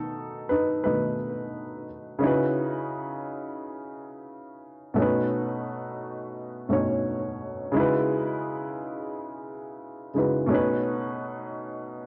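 A dark upright piano carries this short hip hop fragment on its own, sitting up front with a woody, intimate tone, short sustain and audible action noise from the keys. It moves through a nostalgic, melancholic progression in C# minor, alternating between B7 and C#m11 across its range from B2 to C#5. The tempo sits at 87 BPM in 4/4, with a swing feel on the sixteenth notes. The piano passes through a cassette tape character, a low-pass filter and tape echo, which keep it mellow. The whole recording carries the worn, warbling quality of old tape, with pitch drift and a moderate plate reverb. The fragment runs about 12.1 seconds and is cut from a longer piece.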